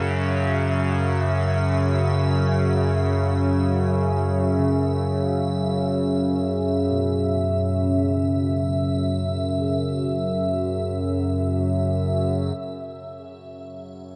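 Cavernous and desolate, this free-time ambient piece rests on an Eadd9/F# chord, with a detuned, wave-folded analog drone up front, slow to bloom and long to fade under chorus. High above, an icy, crystalline glass pad lingers, washed in chorus, built-in reverb and shimmer reverb. From 4.6 seconds, very quiet gamelan-type bossed gongs add bronze, beating arpeggios, all set in a vast, echoing space with an 8.3-second reverb tail.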